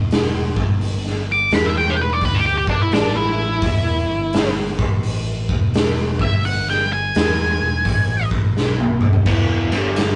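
Driving and raunchy, this short blues rock and southern rock cut from a longer piece swings at 85 BPM, with a growly, overdriven picked bass and a gritty, saturated raw garage drum kit that pairs a punchy kick with a medium-tuned snare. A dark octave-fuzz lead guitar with wah and distortion takes an up-front solo from 1.3 to 8.3 seconds, and a drum fill at 8.6 seconds hands off to a bright, double-tracked overdriven electric guitar riff at 9.3 seconds. The rough rehearsal-room sound carries light reverb, tube saturation and a rolled-off top.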